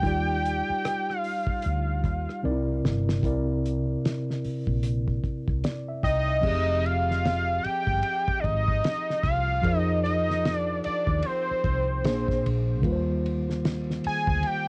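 R&B and neo-soul in F dorian at 75 BPM, with a swung sixteenth-note feel and a smooth, sultry mood, this excerpt from a longer piece has a fat, detuned sawtooth analog lead carrying the melody with a sub octave, a plucky filter and vibrato. A mellow tine electric piano sits up front in the accompaniment, moving through chords such as Ebmaj7, Fm9 and Bb9sus4/F, while a woody, round fretless electric bass anchors the low end. A cloth-damped, thuddy drum kit with dark cymbals, a fat snare and a tight kick plays a fill from 2.4 to 3.2 seconds, and the lead, piano and drums carry a cassette-tape character inside a lightly reverberant home recording.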